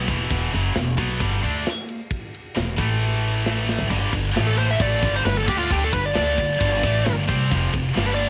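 This home cassette recording has a dulled, tape-bound sound with nothing above 8.0 kHz, a studio reverb over it, and it is cut from a longer piece. The track is relentless, dark heavy metal at 133 BPM in a straight 4/4, built on two bright, high-gain distorted guitars picking riffs over Em, A5, G5 and F5 chords, one of them set in the background. An up-front upright bass, plucked pizzicato on steel strings, gives a woody, thumpy low end. A tight acoustic metal kit in a big room is mid-forward with a medium-tuned snare, a rolled-off top and a cassette-tape colour, and it plays crash, ride, kick, snare and toms, with a fill at 3.7 seconds. At 4.5 seconds a dark, distorted lead guitar enters up front for a solo, soaked in cassette tape grit and tape echo, and it carries the piece to the cut at 8.3 seconds.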